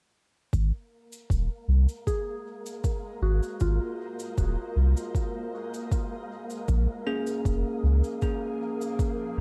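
A spacious digital ambience surrounds this meditative ambient dub excerpt, cut from a longer piece and moving in a straight, unhurried four. A deep, round sub bass and a soft, overdriven electronic kick sit up front, while a natural-sounding cabasa trails a faint dub echo in the background. An airy, breathy, wind-like noise texture swells in on a slow attack and a cloudy, blurred granular pad fades in slowly, both bathing in their own reverb, the pad's detuned unison layers evolving over an Ab chord that shifts to Bbm7 at 6.7 s. From 2.1 s to 6.7 s a pure, gentle FM synth bell plays mellow arpeggios coloured by chorus, phaser and dub echo. At 7.1 s a bright, clean, bell-like tine electric piano takes over with up-front stabs that repeat in dub echo.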